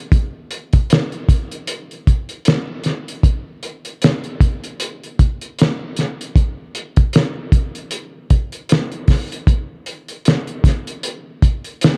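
A dark, lo-fi sound with light reverb frames this sultry, smooth R&B groove, a short passage lifted from a longer piece at 77 BPM in 4/4 with a lazy 16th-note swing. A cloth-damped acoustic drum kit sits up front from 0.1 seconds to the end. Its muffled, gritty hi-hat, tight kick and fat, thuddy snare have a saturated small-room character and a rolled-off top.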